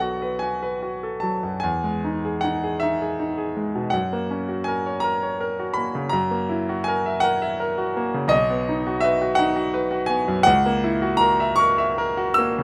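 Dreamy and nostalgic, this brief romantic nocturne excerpt for solo grand piano drifts in a rubato 12/8 lilt. The piano has a bright, brilliant, natural tone and sits up front, spanning B1 to E6 through chords moving from B7 to Emaj7 and on to F#7/C#, captured by close, detailed microphones with little reverb.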